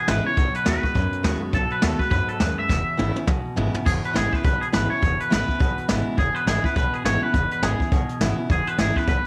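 A swung 4/4 groove at 207 BPM drives this upbeat, rowdy rockabilly excerpt in E major, with a brushed jazz drum kit up front, its dark cymbals and boomy kick, and a woody, thumpy upright bass on gut strings, over a harmony moving from B7 to E, where a drum fill runs from 2.7 to 3.9 seconds. The lead is a bright, clean, scooped twangy electric guitar carrying the melody with tape echo, backed by a full-bodied picked dreadnought acoustic playing accompaniment and, in the background, a slightly broken-up riff from an electric guitar through a small old amp. A small room reverb gives the short cut a natural, close studio feel.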